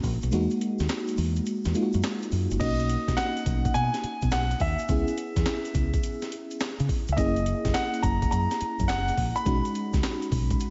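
Swung sixteenths drive this slick, punchy new jack swing excerpt, where a gritty, compressed breakbeat kit with a high-tuned snare, handclaps and hi-hat, its thumpy kick dropping out from 0.3 to 2.6 seconds, plays alongside a round, dark fingered bass, a full-bodied tremolo FM electric piano and a grainy egg shaker in the background, before an intimate grand piano with audible action noise and a diffuse ambient delay takes the melody from 2.6 seconds over chords moving from Emaj9#11 through Bmaj7, C#m7 and F#7, all soaked in a dreamy, lush hall reverb.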